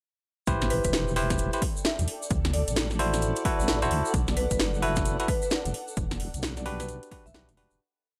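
A skippy, swung two-step garage groove starts at 0.5 s, driven by a punchy, overdriven electronic kick and a house drum kit whose cracking snare, metallic hats and rims sit up front. Beneath them, a deep, dark wobble bass with chorus and tube saturation carries a syncopated line, while a bell-like tine electric piano places rootless chord stabs over Am9, D7, B7sus4 and Em7. In the background, a grainy egg shaker plays hand-played sixteenths, and a woody marimba with medium hard mallets adds short phrases through an analog delay. From 1.7 s, a cloudy granular pad with built-in reverb and sidechain pumping drifts behind the groove and lends it a moody haze. The dry, gritty recording stays in one drop for the whole piece and fades out from 5.4 s.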